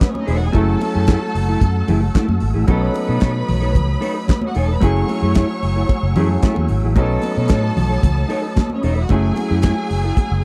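A driving, sultry disco groove at 112 BPM in F# dorian opens with a damped, up-front 70s drum kit (tight kick, snare, hi-hat and handclaps), clear concert grand piano, a dark, clean electric guitar in the background, a soft, flute-like tonewheel organ with key click, chorus vibrato and fast rotary speaker, a lush bowed violin section and very quiet high-tuned congas. A growly, amped fingered electric bass enters up front at 0.3 s as the harmony alternates between B9 and F#m9. This dry, close recording in a 1970s studio style is tuned to A4 = 435 Hz and is cut from a longer piece.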